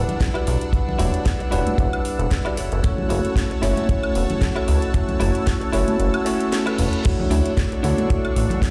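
Nu-disco at 114 BPM with a sunny, groovy lilt from a light 16th-note swing, this excerpt moves from Em9 through F#m7 to Dmaj9 as a bell-like tine electric piano sits up front with vintage sampler grit, tape echo and sidechain pumping, over a lush, detuned unison pad with chorus and phaser. A glossy, nasal chorused synth bass with a filter pluck and a dark, tight kick drive the low end, while a layered house kit with cracking snare, metallic hats, woodblock and crash joins high-tuned congas and a clean, direct-recorded guitar riff with subtle chorus further back. The kick drops out from 6.0 to 7.0 seconds as a very quiet reverse cymbal enters, and the whole mix sounds as if played on a big sound system in a bare room with large studio reverb.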